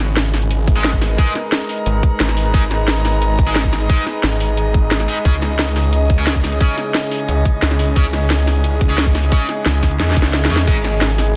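A straight 4/4 pulse at 177 BPM drives this dark, technical drum and bass passage in G# minor, cut from a longer piece and set in its drop, with a futuristic, mechanical mood. Up front, a layered electronic kit brings a cracking snare, metallic hats and crash cymbal, joined at 0.7 seconds by a tight electronic kick, with a drum fill arriving at 10.0 seconds. A snarling, detuned sawtooth bass with tube saturation and a moving notch holds the low end throughout, and a thick FM bass growls in near the close at 9.7 seconds. Behind them, an eerie, inharmonic FM drone sustains chords with chorus, built-in reverb and sidechain pumping, while a soft, breathy pad with a noise layer sits above it, also chorused and pumping. Bright, scooped distorted guitar stabs stay in the background with 12-bit sampler grit and digital delay, over harmony that moves from G#m to C#m and back, all in a dense, heavily limited mix with light reverb.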